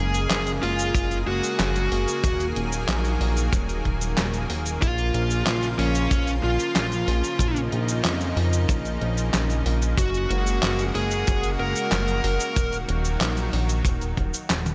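A bluesy, overdriven electric lead guitar carries the melody with distortion and tape echo until 12.8 s in this driving, cinematic synthwave excerpt at 93 BPM in Bb minor. It rides over a lush, bright detuned pad with chorus and a glossy, nasal chorused synth bass with sidechain pumping. A sampler-style 8-bit drum machine of cabasa, handclaps, hi-hat, snare and toms sits in gated reverb, and a punchy acoustic kick enters at 0.9 s, as the chords move through Gbadd9, Ebm and Bbm.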